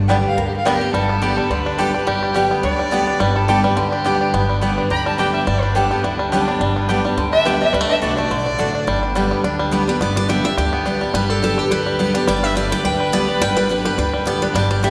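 Set in a reverberant concert hall, this lively, rustic bluegrass excerpt rings with a long, wet tail around its acoustic instruments, several of them up front. A full-bodied dreadnought guitar picks the accompaniment with audible finger squeak, while a dark, woody upright bass plucks the low end and a twangy, percussive banjo rolls out arpeggios with its fingerpicks. The rich, smooth fiddle carries a second line, played by one player with light vibrato, and it takes the spotlight as a solo through the opening 10 seconds. Tucked in the background, a mandolin adds woody double-string stabs until 9.8 seconds, reappearing only in the final instant. At 9.9 seconds, after the harmony has moved from G to D and settled back on G, a second dreadnought guitar, bright with fresh strings, steps forward to pick the melody.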